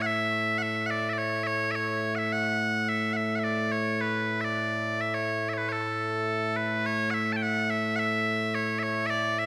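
A solo bagpipe opens this proud, ceremonial excerpt of Scottish traditional pipe music, its bright, piercing tone sounding continuously and sitting up front in straight 4/4. The pipes range from A2 to A5 and are bathed in a wet scoring-stage reverb. The opening section gives way to a new section at 6.9 seconds, which carries on until the cut at 9.5 seconds.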